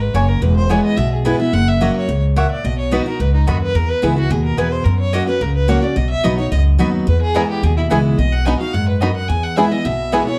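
A straight 4/4 drive at 216 BPM carries this lively, rustic bluegrass fragment in B major, cycling through E, F# and B chords. Up front, a woody pizzicato upright bass and a bright, full-bodied picked dreadnought guitar anchor the accompaniment, while a clear, focused bowed fiddle with light vibrato sits more distant on the melody and a double-strung mandolin adds picked stabs. At 7.4 s a twangy, percussive fingerpicked banjo joins with arpeggios, and the recording has light reverb and a dark, warm production.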